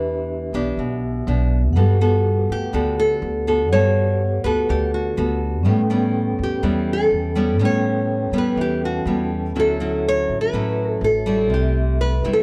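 Relaxed and romantic, this bossa nova excerpt from a longer piece moves in a straight 4/4 through a single section lasting about 12.4 seconds. A fingerpicked nylon-string guitar carries the melody up front, its fresh strings sounding bright and small, with audible finger squeak and a touch of plate reverb. A second nylon-string guitar, classical in character and also fingerpicked and up front, supplies the accompaniment with a warm tone. An upright bass, plucked on gut strings, sits forward with a woody, thumpy low end, while a vibraphone played with medium mallets adds ringing, metallic color with a fast motor vibrato further back in the mix. The harmony drifts from Em7 through Gmaj9, A9 and Dmaj9 before landing on Am7/C, all framed by light reverb and a dark, warm production.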